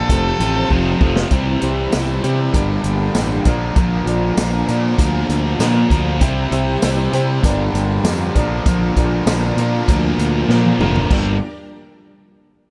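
A growly fuzz bass, fingered and overdriven, sits up front and anchors this brooding, driving classic rock passage cut from a longer piece. Two overdriven electric guitars carry the riff: one crunchy and bright with a phaser, the other a picked semi-hollow body. A vintage acoustic kit drives the straight 4/4 feel with a punchy kick, a medium-tuned snare, tambourine and a rolled-off top, and it plays fills at 0.7 and 10.5 seconds. A dark octave-fuzz lead guitar with slapback echo sounds a single high note in the first 0.7 seconds only. Beneath them, a very quiet fingerpicked twelve-string acoustic shimmers with its octave-doubled strings, joined by a woody upright piano with short sustain and a vintage string machine holding slow-attack violin chords. The harmony cycles through F, C, G minor and B-flat in a dry mix with little reverb.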